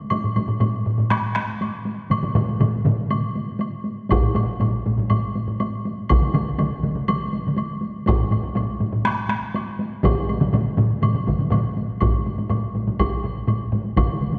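Ceremonial and powerful, this short passage cut from a longer Japanese traditional taiko piece moves at a straight 121 BPM in 4/4, with a solo taiko line struck with hard sticks that sounds compressed and saturated, alongside a close, dry, woody woodblock. Three taiko ensembles build the mass of drums: one vintage and band-limited sitting up front from the start, another with a small-room sound joining up front at 4.1 seconds, and a third in the background that appears briefly at 2.1 seconds before returning at 6.1 seconds. A dark production and a long concert hall reverb give the pounding drums a grand, resonant weight, and a new section begins at 12.0 seconds.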